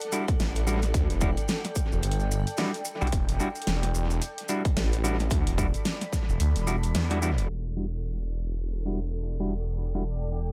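Metallic hats and a huge snare from a dubstep kit open alongside grainy maracas and a cloudy, evolving granular pad in this swaggering, funky glitch hop piece at 110 BPM in E minor with a swung sixteenth feel, soon joined by dark, clean electric guitar stabs with sidechain pumping, a punchy, up-front electronic kick and a thick, swirling phased saw bass with tube saturation, until the kick drops out at 6.9 seconds on a band accent and a filter sweep carries the echo-heavy, low-passed mix from 7.5 to 10.5 seconds.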